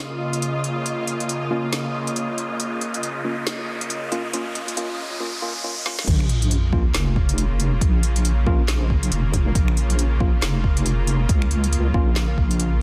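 Deep dubstep in Bb minor at 138 BPM with a swung, half-time feel, this brooding, heavy excerpt opens with a tense, nasal bowed-like drone, an airy wind-like noise texture and a deep house drum kit with a woody snare and smooth hats, while a barky tine electric piano plays filtered stabs through dub echo and a riser builds toward a drum fill at 5.9 seconds. At 6.1 seconds the drop lands with an impact and sub drop, bringing in a layered electronic kick and an up-front, dark wobble bass thickened with chorus. The dense, heavily limited master sits in a light digital ambience.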